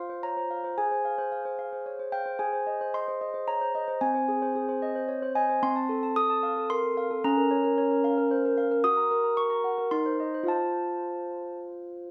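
Close, detailed and lightly reverberant, this fragile, wistful classical lullaby for solo handbells moves at 111 BPM in 3/4, the mellow, airy bells ringing clear and up front from C4 to Eb6 as the harmony drifts from Fm/Ab through Ab, F7/C, Bbm/Db and Gb to settle on F at 10.5 seconds in this 12.1-second excerpt from a longer piece.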